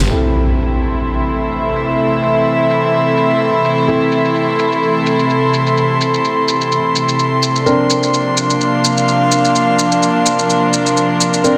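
A swung sixteenth-note groove in four drives this bouncy, gritty bass house piece, carried by a layered electronic shaker heard through low-pass filtering and a small room ambience, with a filter sweep running across the drums throughout. An electronic impact hits up front at the outset and rings until 2.0 seconds. Beneath it, a dark studio string section holds sustained bowed chords with a reedy, gut-string tone and light vibrato, a period-style ensemble that sounds both distant and up front. An airy, breathy pad with a slow attack and long release floats above, thickened by chorus, while a mellow vintage grand piano adds short stabs sent through dub echo. The harmony rests on A minor before shifting to B-flat add nine at 7.7 seconds, all set in a plate reverb and a dense, heavily limited modern master.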